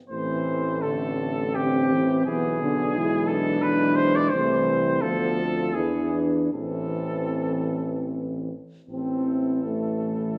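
Classical and hymn-like, this short brass band passage in A minor moves in a rubato 3/4 at roughly 74-89 BPM, its mood yearning and elegiac. A mellow cornet carries the melody up front with light vibrato, sounding distant and roomy, while a French horn section adds a punchy second line in the background. A dark trombone section with a smooth top and a close-miked solo trombone fill out the accompaniment, and a clear, vintage-toned tuba anchors the bass. All five parts play together from 0.1 to 10.4 seconds through a progression that moves from Am through E7/B, Bdim/D and E7 before settling back on Am at 6.5 seconds. A recital hall reverb with a 1.6-second decay gives the ensemble a wet, spacious setting, and the passage shifts into a new section at 8.9 seconds as part of a longer piece.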